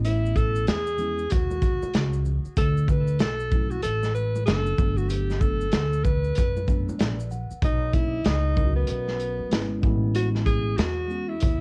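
A clear, roomy solo alto saxophone with cassette-tape colour and analog delay carries the melody over mellow, clean tine electric piano chords, woody pizzicato upright bass, a crunchy, gritty breakbeat kit with a punchy kick, and ringing soft-handed maracas and congas in the background until 7.6 s, in this smooth, relaxed jazz-hop excerpt cut from a longer piece, swinging loosely on a homemade cassette recording with light reverb, where the electric piano slips in a fill from 6.7 s to 7.6 s.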